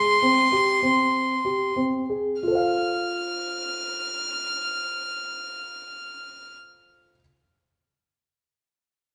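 Restless and shimmering, this short excerpt of contemporary chamber music in an uneven 5/4 meter sets a floating, sul tasto violin melody, pure and softly bowed high in its range, over dark, mellow, somewhat boxy grand piano arpeggios, both up front in a wet recital hall reverb, as the opening slows over its first 2.4 seconds and an Abmaj7 chord gives way to F, with the violin stopping at 6.5 seconds and the piano at 7.2 seconds.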